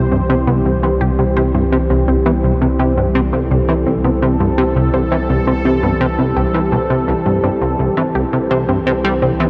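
This ambient, sequencer-driven space music fragment moves at 84 BPM in a straight 4/4, resting on a single C major chord for its 9.5 seconds and carrying a luminous, expansive mood. Up front, a punchy, funky analog bass plays a plucky riff between C2 and G3, its sawtooth, pulse and triangle tones edged with ring modulation and trailed by delay, while a deep, round sine sub bass holds C2 underneath. A bright, resonant pad built from detuned sawtooth, triangle and sine layers sustains chords with a slow attack, an evolving filter swell, long release and chorus. From 0.1 seconds, a lush unison pluck sits in the background, spinning detuned, noise-tinged arpeggios from C3 to C5 through its own delay. A huge, wet reverb with a 7.8-second tail bathes the whole mix in vast space.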